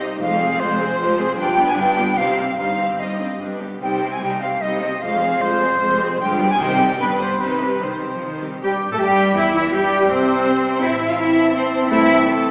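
In this urgent, restless classical passage in C minor, moving in a rubato 3/4 at 144-169 BPM, a distant violin section carries the melody in the background while a focused, close violin section and an airy silver flute with vibrato and a soft attack play second lines, an intense, bright viola section adds accompaniment, and a rich cello section and soft-attacked double bass section hold the bass, until at 8.6 s a dark clarinet, a roomy oboe and a warm French horn section playing sustained chords enter, the whole heard from further back in a reverberant scoring stage through a small speaker.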